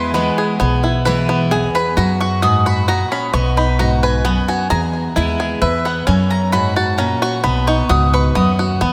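Bluegrass in a lively, joyful feel, this short cut from a longer piece moves at 132 BPM in 3/4 and sits in B major, with the harmony turning through E, F# and B. The twangy, percussive banjo carries the melody up front, played with fingerpicks and touched with delay. A full-bodied dreadnought guitar provides picked accompaniment with a subtle chorus, while the upright bass underpins everything with thumpy, dark pizzicato on gut strings. The mandolin takes a solo from 0.0 to 8.8 seconds, its woody double strings delivering high stabs. A lush hall reverb with a 3.2-second decay soaks the whole mix, giving the warm acoustic ensemble a dreamy, spacious glow.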